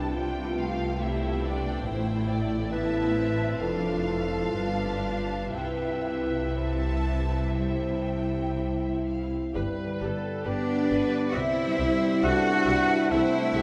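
A violin section carries the melody in this serene classical excerpt, its bowed line lush and expressive with vibrato, a soft attack and a smooth top. The tempo moves freely, in 4/4 at roughly 58-71 BPM, starting in C major and shifting to G major at 9.6 s. Beneath it, a distant second violin section and a background viola section add rich, even string lines, while a mellow solo clarinet weaves a second line and a concert harp rings out thumb-plucked arpeggios. Clear cello and double bass sections anchor the bass, the double bass sounding focused. A bassoon enters at 9.5 s with a warm accompaniment, and from 10.5 s a silvery, airy flute, a faint oboe with light vibrato, and a tight, distant French horn section holding sustained chords fill out the close. A vast, echoing cathedral reverb bathes the whole ensemble.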